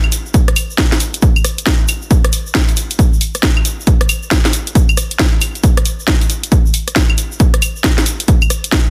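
The recording has a dense, heavily limited modern master set in a digital ambience, with the drums sitting up front and a small room around them. This short UK garage excerpt runs at 136 BPM in 4/4, swung at 63% on the sixteenths, and carries a bouncy, late-night mood. The layered garage drum kit opens at 0.0 seconds with a cracking snare, claves, rim click and warm hats. An egg shaker joins at 0.1 seconds, grainy and bright with a live-room feel, tucked in the background. At 0.3 seconds the electronic kick drum arrives, punchy and tape-warm with an analog character, re-recorded in a small room and the loudest element in the mix.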